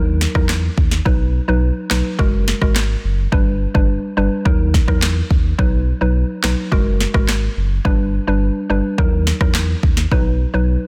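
A mallet-like synth pluck and a sub bass open this bouncy, summery dancehall excerpt together at 0.0 seconds, with an afro-pop drum kit joining at 0.2 seconds. The tempo is 106 BPM in a straight 4/4, in B major with a tuning of A4 = 441 Hz. The up-front pluck has a woody, round FM tone with a noise layer, a warbling vintage chorus and fast, decaying notes that stay mellow as it moves through a looping D#m, B, F#add9, G progression. Beneath it, the sub bass with octave is deep and full, a sustained sine with a quick attack. The electronic drums sit up front, mixing a deep kick, a sharp snare, rim clicks and handclaps with a tape-warm, produced sheen. Digital ambience surrounds a dense, heavily limited modern master, and the recording is cut from a longer piece.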